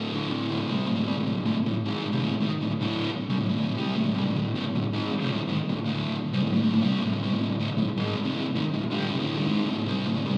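Heard through a venue's PA in a live club setting, the recording carries a moderate room reverb around a single thick fuzz guitar, double-tracked and placed up front. This raw, swaggering rock excerpt moves at 157 BPM in a straight 4/4, with the picked electric guitar playing alone from 0.0 to 10.4 seconds, opening on a D5 chord and ranging from D2 to C4. Distortion, slapback echo and digital delay give the guitar a gritty, saturated edge.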